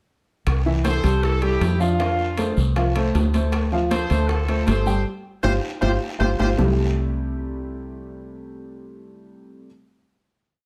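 A short, joyful salsa piece opens at 0.5 seconds with a round, foam-muted electric bass up front playing a tumbao that anticipates the chords, alongside the percussion. The congas mix slaps and open strokes in a close, dry background, while very quiet, distant bongos keep steady eighths with a hand bell, metal-shelled timbales ring out a shell pattern and bell, and a raspy guiro adds long and short strokes. A dark, worn baby grand piano joins almost at once with an octave montuno, its boxy, intimate tone carrying audible action noise. From 0.8 seconds a punchy horn section with vibrato and a smooth top plays tight, pop-style hook phrases, partly doubled in thirds. A band accent and drum fill drive toward the close before the percussion and horns drop out, leaving bass and piano to hold a final chord to the end under light reverb.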